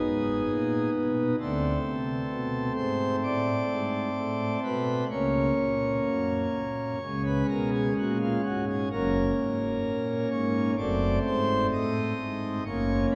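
A pipe organ's principal chorus, full and up front in a romantic voicing, carries this majestic, reverent classical chorale-style excerpt alone, spanning F#1 to D#5 at a rubato 64 BPM in 4/4 with tuning at A4 = 438 Hz. Its harmonies move from G# minor through D5 and F# over C# toward a closing F# diminished seventh at 10.8 seconds. The organ rings in a wet church reverb with a 3.4-second decay that lends the 13.2 seconds a spacious, devotional breadth.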